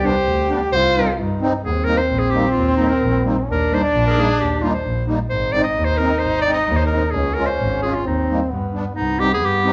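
In a straight two-beat feel, this bittersweet yet festive klezmer fragment sets a bright, classically styled clarinet melody up front over a brilliant, close-miked trombone second line sung with vibrato and scooped notes in jazz style, a reedy, shimmering musette accordion accompaniment, and an intense bowed double bass with an airy, boxy tone, all playing live together in a large studio with moderate reverb.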